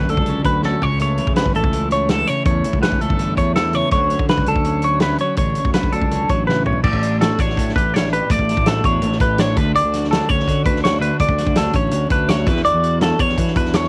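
Math rock and midwest emo at 165 BPM in D major, this playful, intricate excerpt from a longer piece sets a twangy, compressed electric guitar playing up-front arpeggios through phaser and plate reverb over a bright twelve-string electric guitar with spring reverb in the background, a growly fuzz fingered bass, and a loose indie drum kit with a fat snare, punchy kick and dark cymbals that brings fills at 0.6 and 6.5 seconds, while chords move from Bm7 through A7, Dmaj7 and A7sus4 to E9sus4, all wrapped in the light reverb and vinyl crackle of a home recording on cassette.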